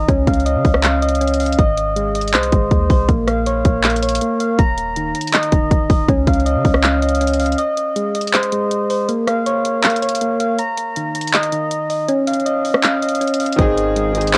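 Soft, round electric-piano-like synth keys play arpeggios through chorus, analog delay and cassette tape grain over a deep, boomy 808-style bass in this dreamy, triumphant half-time trap piece at 160 BPM in Ab major, while an overdriven trap kit with a hard-clipped kick, bright hi-hats, handclaps and rim clicks sits up front; the bass drops out at 7.5 seconds for a break and returns at 13.6 seconds alongside an intimate concert grand piano with audible action noise, all under light reverb on a home cassette recording cut from a longer piece.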